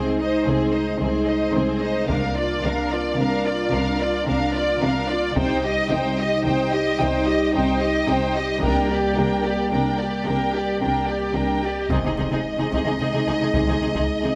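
A huge, dark impact opens this dramatic, relentless cinematic cue, cut from a longer epic orchestral score, as the strings and horns sound together at 110 BPM in 3/4, tuned slightly sharp to A4 = 445 Hz. Two violin sections carry the melody and a second line with lush, bowed vibrato and a smooth top, while a viola section supplies close, focused accompaniment. A mellow French horn section holds sustained chords with a soft attack. In the background, a woody cello section rests on a low C, doubled by an expressive, close double bass section. Heavy-stick taiko drums enter at 2.1 seconds as the harmony moves through Ab/C, Bb/C, Cm and Gm/C. At 11.9 seconds another impact lands in the background as the chords return to Ab/C, all set in a moderate scoring-stage reverb.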